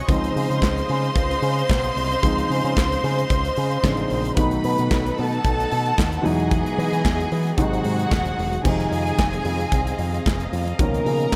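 Lightly reverberant and celebratory, this danceable disco excerpt in Db major moves at 112 BPM, with a punchy, polished drum kit of kick, medium-tuned snare, hi-hat, handclaps and crash under gated reverb, a picked electric bass through an envelope filter, an intimate grand piano with audible action noise, a lush, up-front string section carrying a vibrato-laden second line, and a clear, smooth-topped string ensemble holding sustained chords through harmonies such as Dbmaj9, Emaj9 and Fm7.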